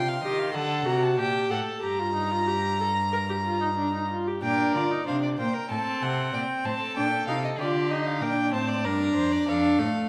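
This is a baroque-style fugue for string quartet in G minor, serious and contemplative, moving at 95 BPM in a straight 4/4 and cut from a longer piece. Two bowed violins in period style carry the upper voices: the first takes the melody with light vibrato and a gut-string sheen, while the second traces its own line just beneath with a reedy edge. The viola, which joins at 0.2 s, sits up front in the accompaniment with a smooth top to its tone, and the cello anchors the bass with a rich, close sound until 9.9 s. The harmony opens on a rootless Am7b5/C and a D7 before settling on G minor, then a second passage from 4.4 s turns through Gm/Bb and D7/A toward D minor. A recital hall reverb with a 1.4-second decay lends the ensemble a resonant, wet sense of space.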